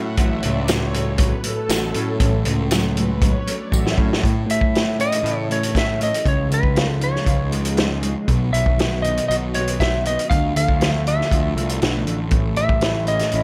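Light reverb and small-room ambience frame this hazy, trippy psychedelic rock excerpt, where mellow, full-bodied sawtooth string-machine cellos hold slow-attack, chorused chords in the background over a dark, double-tracked, fingered guitar riff with tremolo, a fuzzy overdriven picked bass and a punchy, up-front vintage drum kit with a rolled-off top, while a jingly tambourine joins briefly at 0.7 s and, after a drum fill leading into 4.2 s, a clean slide lap steel played with fingerpicks carries the melody through digital delay from 4.5 s.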